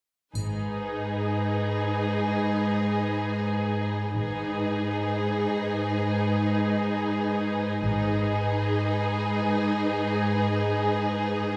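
Bright, lush cellos sit up front carrying the bass of this elegiac fragment from a slow romantic orchestral movement in free time, alongside rich second violins, smooth, even violas and expressive double basses with vibrato and portamento until 8.7 s, while a warm first-violin melody floats in the background, a triangle glints only from 0.4 to 2.2 s, and the whole is heard from further back in a reverberant recital hall.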